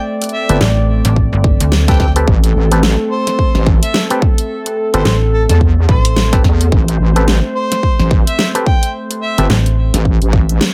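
A smooth, warbling analog pad opens this gritty, swaggering glitch hop excerpt, holding a sustained A minor seventh chord with chorus and sidechain pumping beneath everything. At 108 BPM in 4/4 with a swung sixteenth-note feel, the dubstep kit's hi-hat and huge snare arrive almost at once, joined by a punchy electronic kick at 1.2 seconds, all sitting up front with a layered, produced character and a small-room re-recorded sound. Two basses share the low end: a heavy, saturated wobble bass with chorus, and a snappy FM bass with a metallic attack and decaying notes. Above them, an auto-wah clav adds percussive, stringy stabs through a combo amp, pumping and echoing with digital delay. A mellow harmonica carries the melody with light vibrato and a soft attack, sounding distant and roomy under its own delay until it stops at 9.5 seconds. The whole piece sits in light reverb and is cut from a longer track.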